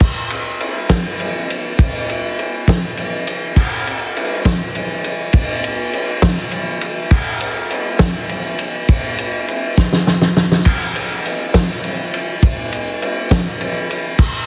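A loose, up-front indie rock drum kit in a straight 6/8 leads this wistful, dusty excerpt, its fat snare, tight kick and dark crash and ride cymbals sitting mid-forward with a rolled-off top in a small room, while a very quiet, jingly, band-limited tambourine shimmers beneath, all under light reverb and a heavily compressed radio sound, with a drum fill at 9.8 seconds before the section repeats.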